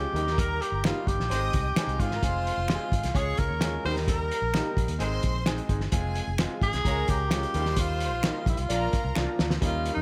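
Uptempo 1960s-style soul at 130 BPM in Eb mixolydian, warm and uplifting, with a roomy tenor saxophone carrying the melody up front through tape echo over a clear grand piano, a round, foam-muted fingered bass and a cloth-damped, thuddy drum kit with a fat snare and rolled-off top. Behind them sit twangy, slightly broken-up electric guitar stabs, a bowed studio violin section and a tight horn section adding second lines, the horns entering at 1.3 seconds, while finger snaps tick along in the background. The chords cycle through Eb, Ab, Fm and Db before landing on Bb as a drum fill at 9.2 seconds closes this cut from a longer piece, all under light studio reverb.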